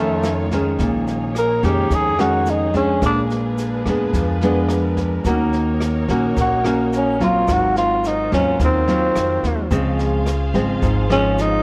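Intimate and melancholic, this straight-feel bossa nova excerpt in Bb minor at 108 BPM features a breathy, raspy tenor saxophone soloing up front from 0.8 s with scooped notes and vibrato over a fingerpicked nylon-string guitar with a full-bodied, old-string tone, a thumpy pizzicato upright bass, a boomy-kicked brush kit entering at 0.2 s, a grainy tube shaker and a lush, distant bowed string section in the background, all moving through chords from Bbm7 to Dbmaj7 under light reverb and the warbling pitch drift of worn cassette tape.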